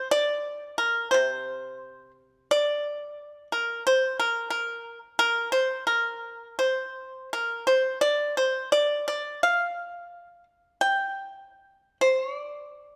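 Chinese traditional solo plucked-string music, elegant and longing, in which a lone pipa, played with fingerpicks, sounds percussive and up front with a dry attack across a range from Bb2 to G5, moving in a rubato 4/4 around 88 BPM through a 13-second passage cut from a longer piece and set in the moderate reverb of a recital hall.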